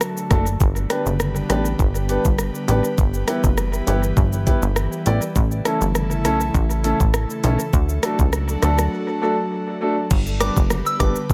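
An airy, breathy pad and an electronic island pop drum kit open this bouncy, hypnotic dancehall excerpt at 101 BPM in a straight 4/4, the pad's sustained chords carrying chorus and sidechain pumping beneath a knocking kick, metallic hats, rim click, shaker and crash. Within a fraction of a second a plucky analog bass arrives up front, punchy, funky and nasal, alongside a concert grand piano whose open, deep-toned accompaniment rings with long sustain through tape echo. The harmony moves from D to G, Em and A before returning to D, with a break arriving at 8.9 seconds and a fresh passage on G from 10.1 seconds. Near the end, at 10.4 seconds, a soft synth bell adds a brief, pure, warbling melody high above, while very quiet, round, low-tuned bongos join in softly. Light reverb and digital ambience give the mix an echo-heavy sheen, with the drums echoing on tape and sitting forward beside the bass.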